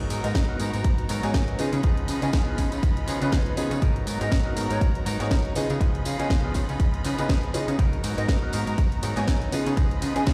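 Groovy and sensual, this 121 BPM filtered disco house excerpt in G# dorian swings its 16ths over a G#m9 to C#9 vamp, driven by an up-front, punchy electronic kick, a tape-warm house kit with cracking snare, hi-hat and ride, and a funky sawtooth-and-square analog bass that plucks with a fast attack and decays. A bright, twangy direct-recorded electric guitar plays a clean picked riff while a clear baby grand piano accompanies through a phaser, and behind them lush bowed symphonic strings hold chords with biting vibrato and 12-bit sampler grit. A pure, straight-toned concert flute carries the melody with delay, a band-limited vintage tambourine sits in the background, and every part but the kick pumps to the sidechain, all heard through a stone room on a big sound system.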